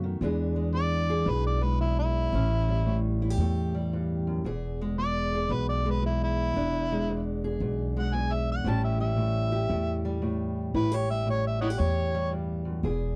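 An overdriven, gritty harmonica leads this rollicking, soulful excerpt of acoustic country blues, its amplified jazz-style solo full of tongue slaps, scooped notes and light vibrato entering at 0.8 seconds over a boxy fingerpicked parlour guitar and a woody, thumpy pizzicato upright bass, swinging at 114 BPM through E7 and A7 in a dry, close 1970s-style studio sound.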